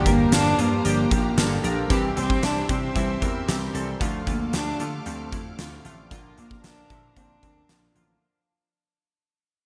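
A straight 4/4 pulse at 114 BPM drives this short 1980s-style pop fragment, which fades out across its full 8.2 seconds and carries a nostalgic yet urgent mood over a Gm7, C, Dm and Bb progression. A huge arena drum kit sits up front with a fat snare, punchy kick and hi-hat in a big, airy, polished room, while a vintage slap bass adds a round, amped electric low end. Glossy chorused retro synth keys supply the accompaniment with fast-attack, decaying pulse-wave and sawtooth tones, pulse-width modulation and a filter sweep. Behind them, a string machine of violins holds shimmering, warbling sustained chords with a slow attack and ensemble chorus. The melody belongs to a single bowed cello with a warm, nasal, boxy sul tasto tone, light vibrato and delay, heard close and intimate from 0.1 seconds. A moderate, lush hall reverb and bright 1980s-style digital production give the whole a polished sheen.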